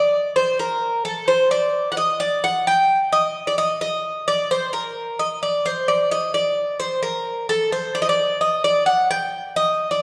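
A solo Greek bouzouki carries this intense, dramatic Greek folk passage in 7/8, its picked double strings ringing with a metallic edge and some octave-doubled courses. Placed up front and moving between A4 and G5 for the full 10 seconds, the instrument blooms into a wet recital-hall reverb that gives it the spacious air of a church or concert hall. This excerpt is cut from a longer piece.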